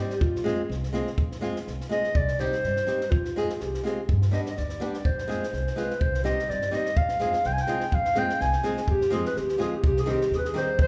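Virtuosic and fiery, this short excerpt of a Balkan wedding-band tune in F dorian sharp 4 moves at 125 BPM in a swung 2/4, with a dark, roomy clarinet up front taking a classical-style solo from 1.2 to 8.9 seconds over fingerpicked flamenco guitar, a woody pizzicato upright bass, and a dry compact cocktail kit with a punchy kick and high-tuned snare, all heard from further back in a recital hall as the chords move mainly between Fm and Cm with a turn to G.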